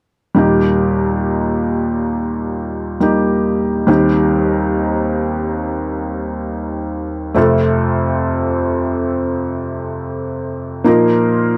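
A felt-muted upright piano, soft, mellow and intimate with audible action noise and a thin felt tone, sits up front in this emotional, heartfelt pop fragment, playing a slow accompaniment from 0.3 to 11.6 seconds through Eb, Cm/Eb, F and Bbsus4 with light reverb in a dry, close 1970s-style studio sound.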